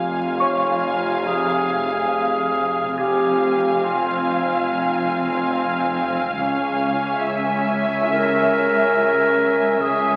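Cinematic suspense film score, uneasy and mysterious, moving at a slow 70 BPM in 4/4 in F harmonic minor, with the harmony shifting from Fm to Dbm at 6.4 seconds in this short cut from a longer piece. A distant, veiled section of muted violins carries the melody on Ab5, while a second muted violin section sits up front on an inner line and a mellow, vintage-toned clarinet weaves a solo second line beneath them. Lush con sordino violas fill out the accompaniment in the background, and a low foundation comes from muted cellos with light vibrato, soft-attacked muted double basses and a deep, round sine sub bass drone. Entering at 0.4 seconds, a tinkling, slightly out-of-tune music box adds a fragile, band-limited shimmer that ranges up to Ab6. The whole piece is bathed in a wet scoring stage reverb and the crackle of a very old 78 rpm record, giving it a haunted, faded quality.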